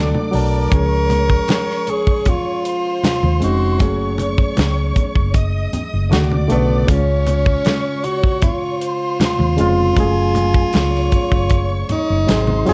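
A straight 4/4 pulse at 78 BPM sets an unhurried groove for this lush 1970s-style soul passage in Db major, with chords drifting from Dbmaj7 to Gbmadd9 and briefly through Dmaj7. The up-front studio drum kit, heard from 0.3 seconds, pairs a punchy kick and medium-tuned snare with hi-hat, while low-tuned congas with a thick-skinned, vintage tone sit in the background from 0.1 seconds. A hollow-body short-scale bass gives a round, dark, amped foundation, and a lightly overdriven reed electric piano adds barky, bright accompaniment through its built-in speakers. Over this, a close-miked tenor saxophone carries the melody in a clear, breathy jazz style with scooped notes, supported by a distant violin section whose bowed, vibrato-rich second line adds expressive sweetness. The small room and dark, warm production give this short cut from a longer piece a lush, warm glow.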